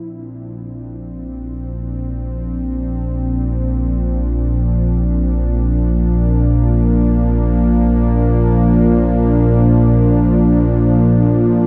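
A smooth, detuned analog pad sits up front with chorus, holding a soft-edged Bbadd9 chord from the start as it slowly fades in over the whole excerpt. At 1.0 seconds a deep, rumbling drone joins underneath on a low Bb, its ominous, warbling, wave-folded tone rising gradually out of its own reverb. The piece is weightless and serene ambient music in free time and Bb major, set in a vast, wet reverb with dark, warm production.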